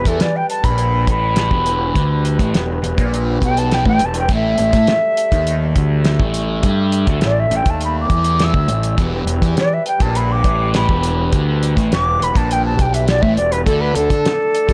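A cloth-damped, thuddy drum kit with a fat snare and tight kick keeps a straight 4/4 pulse at 102 BPM, anchored by a punchy, overdriven fingered bass sitting up front, in this mysterious, hypnotic psychedelic rock excerpt in E minor. A thick, double-tracked fuzz guitar plays a riff over chords moving from Em to A5 and back, landing on D5, while a soft-attack brass ensemble holds sustained chords beneath. Throughout the 14.7 seconds, a distant, airy silver concert flute takes a straight-toned solo with a crisp attack, trailed by analog delay in a small room.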